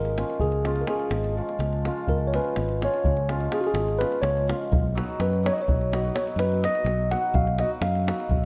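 In a straight, lopsided 11/8, this festive, exuberant Balkan wedding-band excerpt has a mellow tine electric piano, touched with slapback echo, carrying a solo melody throughout while a bright, shimmering hammered dulcimer rings out accompaniment beneath it. An overdriven fingered electric bass sits punchy and up front, and a tight, dry davul drives the rhythm from 0.1 seconds. The harmony moves from Db to Cb at 4.7 seconds, all captured with close, detailed microphones and light reverb.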